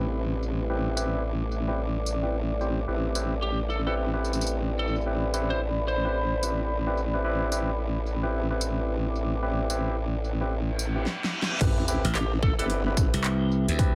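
An echo-heavy, spring-reverbed glitch hop excerpt at 110 BPM in A minor, gritty and swaggering with a swung 16th feel, opens on an Am7 bed of a dark, detuned analog pad and a warbling ambient pad pumping in the background beneath a barky, overdriven tine electric piano stabbing through delay and a saturated formant-sweep wobble bass up front. A dubstep kit with a huge snare and metallic hats joins at 1.0 s under a filter sweep, while a twangy, slightly broken-up lead guitar with 12-bit grit carries the melody from 3.4 to 6.4 seconds. A reverse cymbal and sub drop lead through a drum fill into the drop at 11.6 s, where a punchy electronic kick hits with an impact, a growly, glassy slap bass follows at 12.0 s, and the guitar returns briefly.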